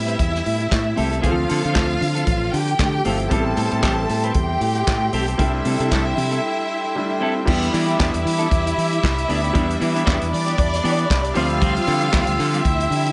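A swung sixteenth-note disco groove at 116 BPM in 4/4 drives this sultry, danceable excerpt. A tight soul drum kit with handclaps and dark cymbals sits beside a bright, direct fingered electric bass, with very quiet, thin-skinned congas adding color early on, while a focused bowed string section sings up front with vibrato and an intimate grand piano, audible action noise included, and a clean fingered electric guitar stay in the background over chords moving from Am7 and Dm7 toward Em7 and Dm11. From 3.3 s an ethereal glass harmonica adds glassy, slow-attack sustained chords with audible beating, a brief break lands at 6.4 s, and the second section begins at 7.5 s, framed by a light studio reverb.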